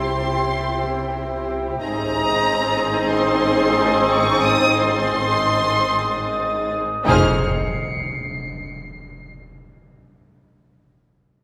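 Muted violins carry the melody high above the rest of this eerie, ominous suspense cue, their con sordino tone veiled and up front with vibrato. Beneath them a second violin line, violas and a glass harmonica fill in the harmony in F minor. The harmonica's pure, glassy sound has a slow attack and audible beating. Muted cellos and double basses sit low and lush, the cellos in the background. A faint, high violin texture hovers behind everything and lingers until 9.4 seconds. The passage moves in free time from C to Ab, and at 7.1 seconds a timpani stroke and an electronic impact land on an Fm7 chord, the impact ringing out to the close of this cut from a longer piece in a reverberant, church-like hall.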